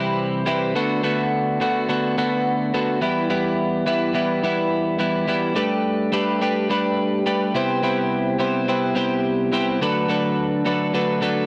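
A bright, clean twelve-string electric guitar carries this short upbeat rock piece entirely on its own, playing solo from start to finish across 11.5 seconds. Its picked, jangly tone sits up front, compressed and spanning C3 to C5, with the grain of cassette tape on its sound. The straight 4/4 feel moves through two sections, with the second beginning at 5.6 seconds. The harmony moves from Cmaj7 through D6 and Em, then opens onto Gadd9 before returning to Cmaj7 and D6. Light reverb and the intimate character of a home cassette recording give the cut, taken from a longer piece, a casual, homespun charm.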